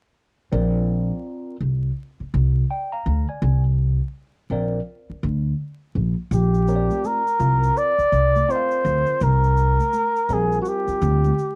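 A veiled, bucket-muted trumpet with vibrato and scooped notes takes a jazz-style solo from 6.3 seconds, joined by soft, band-limited egg shaker and congas, over a woody, thumpy pizzicato upright bass and a worn, slightly out-of-tune tine electric piano with phaser and tape colour, both playing from 0.5 seconds, in this mellow, smoky, swung 83 BPM jazz-hop fragment that carries the vinyl crackle and light reverb of a home cassette recording.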